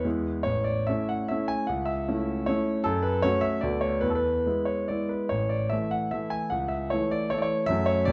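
A clear concert grand piano, natural and up front with deep bass and long sustain, plays alone throughout this short excerpt of a graceful, proud romantic dance in 3/4, its dotted rhythms carried with rubato at roughly 130-166 BPM. Cut from a longer piece in A major, the passage moves through A, F#m, Bm7/D and E harmonies, reaching F#m7 at 7.7 seconds. A moderate recital hall reverb frames the piano in a dark, warm production.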